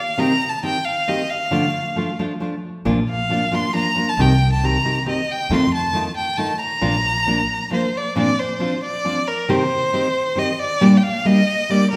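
Bathed in a reverberant recital-hall ambience, this proud, romantic mariachi excerpt in 3/4 at 136 BPM in Bb major features a clear, close violin singing the bowed melody with smooth, even vibrato over an up-front, fingerpicked nylon-string guitar with audible finger squeak, while a woody, growly pizzicato upright bass joins from 2.9 to 7.4 seconds.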